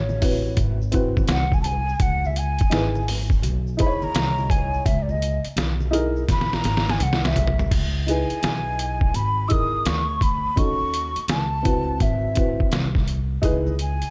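Jazz-hop in C# dorian at 84 BPM, with a swung sixteenth-note feel and a nocturnal, mellow mood, cut from a longer piece. A breathy, hollow flute with vibrato and a slapback echo opens with a solo and carries the melody. Beneath it sit woody pizzicato upright bass, a dark, worn, slightly detuned upright piano with audible action noise, and a gritty, pitched-down sampler-style drum kit with a thumpy kick that sits up front and plays a fill from 6.3 s. Bright congas and tube shaker stay distant in the background, dropping out at 7.7 s and returning at 13.4 s, all within a warm studio reverb.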